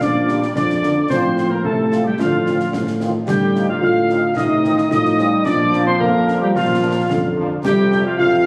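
Proud and rousing, this military-style march for wind band moves in a straight two-beat metre and is cut from a longer piece. A dark trumpet section carries the melody from the background, soft in attack and set at a distance in the room, while a solo euphonium with light vibrato sounds the most prominent second line beneath it. A pure, expressive piccolo with rolled-off highs and a smooth-topped woodwind section with vibrato add further second lines above and alongside, as a mellow trombone section holds sustained chords and a solo tuba anchors the bass. A roomy French horn section, set far back, joins the accompaniment at 0.3 s. The concert snare drum, concert bass drum and shaded clash cymbals sit close and dry against a moderate scoring-stage reverb, further coloured by a phone recording in the room, club reverb and compression.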